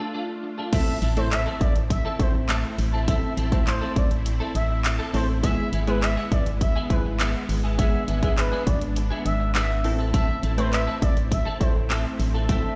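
Heard as if through a big sound system in a bare stone room, this short dance-pop excerpt carries light digital ambience and a bittersweet yet confident mood at 102 BPM in A harmonic minor. It opens on a brief break over Dm, where a vintage sawtooth string machine of violas holds sustained chords in the background and a clean, twangy, compressed electric guitar picks out a riff, both thickened by ensemble chorus. At 0.7 seconds the drop arrives with a very quiet electronic impact, a punchy, layered pop drum kit with bright hats, handclaps and crash, a crisp, detuned wavetable chord stab with a filter pluck, and a smooth portamento lead that sings a sustained melody with vibrato, chorus and tape echo. From 1.0 seconds a hollow, dark, organ-like FM bass with a fast, decaying attack sits up front beside the drums. The chords move from Am to E/G# and back to Am, while sidechain pumping makes the strings, lead, stab and bass breathe.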